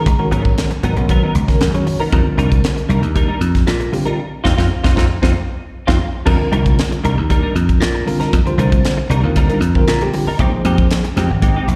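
Electric jazz fusion with a nocturnal, funky mood, cut from a longer piece and heard live through a venue's PA in a small, reverberant hall, where a dry, foam-muted thumbed slap bass and a crisp, high-tuned fusion drum kit with a punchy kick sit up front beneath a phased tine electric piano that takes a short fill at 9.6 seconds and clean, compressed electric guitar stabs with chorus and slapback echo, moving over lush sus4 chords, with a band accent at 4.2 seconds capped by a drum fill at 5.7 seconds.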